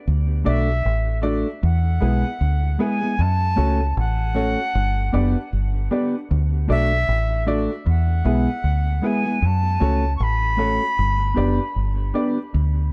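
Reggae in D major at 77 BPM, this sunny, uplifting passage from a longer piece moves in a loose, swung 4/4 over a cycle of D, E, F#m and G that comes around twice. A deep dub fingered electric bass sits up front from 0.1 seconds, round and foam-muted with a direct, amped tone that anchors the low end. A mellow electric guitar, clean and fingered, supplies the accompaniment, its dark sound trailing dub echo, while a worn grand piano adds intimate stabs with audible action noise. From 0.5 seconds a silver concert flute carries the melody, pure and expressive with vibrato and a crisp attack, set distant in the mix and also touched by dub echo. The room is dry, with little reverb, and the bass runs until 12.9 seconds as the excerpt closes.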